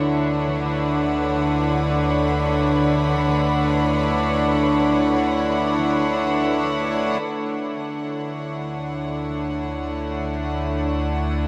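An up-front chamber string section sustains a Dmaj7 chord with light vibrato, its earthy, smooth-topped tone softened by a low-pass filter and rising in a fade-in after 7.2 seconds, in this weightless, warm ambient piece in free time in D major, cut from a longer work. Beneath it, a deep, ominous bass drone rumbles on D2 with its own built-in reverb, while an evolving analog drone with chorus fades in twice in the background. A focused studio violin section adds vibrato-rich texture as it fades in and then stops at 7.2 seconds, all set in a huge, wet ambient reverb.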